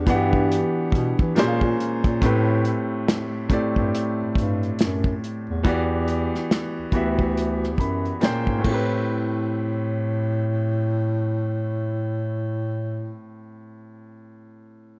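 Late-night and smooth, this slow neo-soul R&B excerpt at 70 BPM in A dorian, with a swung 16th feel, opens over a hollow, flute-like chorused pad that drops away at 2.2 s, while a close-miked bass clarinet with light vibrato carries the low end, a clear, open baby grand piano with long sustain plays accompaniment and adds a fill at 7.4 s, a dark soul drum kit with a tight kick and a rolled-off top sits up front until 8.9 s, and a full-bodied fingerpicked nylon-string guitar briefly touches a second line in the background, all wrapped in small-room ambience and the warbling pitch drift of worn cassette tape.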